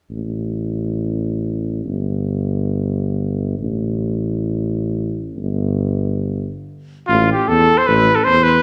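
Balkan folk in free time and A minor, restless and bittersweet, cut from a longer piece and heard in the reverberant wash of a recital hall or church. A mellow tuba plays alone from 0.1 seconds, its soft attack and smooth top giving the bass line a classical poise until a brief stop at 6.5 seconds. At 7.1 seconds a warm, up-front trumpet enters over an A5 chord to carry the melody above the tuba's bass until the close at 8.6 seconds.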